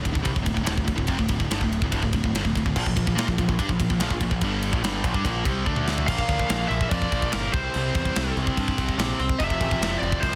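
Heavy metal at 144 BPM in a straight 4/4, relentless and aggressive, cut from a longer piece. A bright, double-tracked high-gain rhythm guitar drives the riff up front from the start, over power chords moving from D5 to Bb5, joined by a growling picked electric bass whose overdriven tone sits low beneath it. A tight acoustic drum kit with a tight kick, medium-tuned snare, crashes, ride and toms sounds big-roomed and mid-forward, and a drum fill at 5.7 seconds leads into the second section. At 6.1 seconds a warm, distorted high-gain lead guitar enters with a melody in its upper register as the harmony shifts through Bb, C5 and F. The mix is dry, with little reverb, and comes across as a dense, heavily limited modern master.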